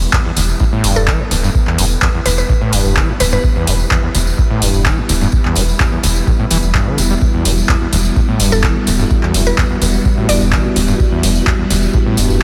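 A straight 4/4 acid house groove at 127 BPM in E minor is driven by a deep, tape-warm electronic kick, a booming analog drum machine with handclaps and metallic hi-hats, and a jingly tambourine, while a squelchy, distorted acid bass riff with tube saturation and analog delay rides over a round sine sub bass, a lush string machine holds sustained Em chords with ensemble chorus and sidechain pumping, and a woody, mallet-like FM pluck with 12-bit grit surfaces in the background from 1.0 to 3.4 seconds and again from 8.5 seconds, all set in a dreamy cathedral reverb that makes this brief cut of a longer piece feel hypnotic and trippy.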